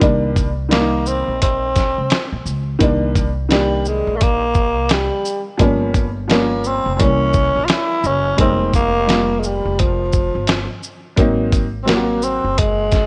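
This cool, mellow jazz-hop excerpt opens with a dusty, sampler-style drum kit sitting up front, its thumpy kick, fat snare, hi-hat and shaker riding a lazy swung sixteenth-note feel beside a woody, pizzicato upright bass and a boxy, slightly detuned upright piano whose action noise is audible. At 0.7 seconds a growling tenor saxophone takes the lead, breathy and raspy with a subtoned, soft attack, scooped notes, vibrato and a smooth top. The piano comps through moody extended harmony, moving from Cm9 through Gm7b5 and C7b9 to Fm11 and Ab7, before dropping out at 12.8 seconds while the bass, drums and saxophone carry on to the cut. The drums sound compressed and gritty, as if re-recorded in a small room. Light reverb and small room ambience frame the intimate performance, and a worn, cassette-like tape character adds a warbly pitch drift that gives the whole recording a hazy, vintage glow.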